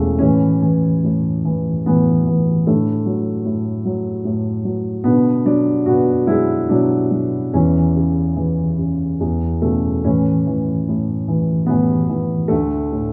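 Classical solo piano in a lyrical, calm and warm mood, flowing freely in a rubato 3/4 across a 13-second fragment of a longer piece, where a dark, mellow, boxy baby grand with short sustain sits up front, spanning E1 to G#4 as its chords move from A through D/A, Bm, C#m/E and E5, back to A and then on to D5, all bathed in the lush reverb of a recital hall.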